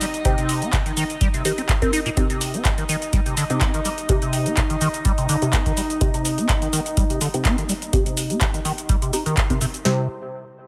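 A lightly swung 4/4 groove from a booming, tape-warm analog drum machine with deep kick, crisp snare, handclaps, metallic hats and shaker drives this trippy, raw acid house fragment, as a squelchy, resonant square-wave acid bass riff, pumping and coloured by phaser, chorus and dub echo, runs beneath sustained chords from a bowed, reedy gut-string section and muted, detuned sawtooth dub chord stabs that sit dark in the background, each of those three parts carrying a filter sweep throughout.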